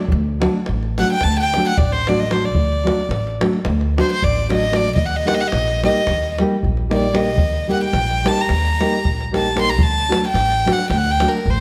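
A moderate scoring-stage reverb gives this short cut from a longer Balkan wedding-band piece a roomy, spacious sound. The mood is fiery and restless, driven by a quick 9/8 metre with a straight feel. A dark, full-bodied nylon-string guitar is thumb-plucked in a deep classical style for accompaniment. It sits beside a woody, thumpy upright bass, played pizzicato on gut strings, and a tight davul that sounds as if recorded in a small room. From 1.0 s a single violin carries the melody, close and up front, with an intimate, airy bow, light vibrato, a soft attack and a sul tasto tone. The harmony rests on D, moves to Eb at 5.0 s, and returns to D at 9.8 s.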